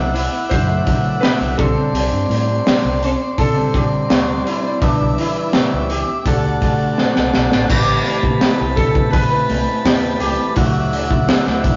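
Psychedelic rock with a trippy, dark mood in a straight 4/4, captured as a rough rehearsal-room recording with a muffled top end and short small-room ambience. A gritty, saturated breakbeat drum kit sits up front with a punchy kick and high-tuned snare. Around it play a slightly broken-up guitar riff from a small old amp, round fingered bass, a buzzing, plectrum-plucked sitar melody with shimmering sympathetic strings and analog delay, and sustained chords on a buzzy, overdriven combo organ with light vibrato. A drum fill at 7.0 seconds leads into a new passage, where very quiet, distant congas join at 8.2 seconds.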